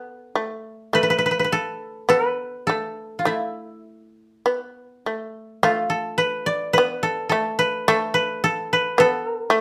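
Japanese traditional chamber music, calm and austere, moves at a slow 52 BPM in 2/4 with uneven, rubato beats, and this brief extract is cut from a longer piece. A dry, woody koto, plucked with fingerpicks, carries the melody between E4 and E5, while a bright, buzzing fretless shamisen, plucked with a plectrum, adds a percussive second line low in the A3 to B3 range. Both instruments sit up front in a moderate studio reverb and play throughout, with the music moving into a new section at 5.6 seconds.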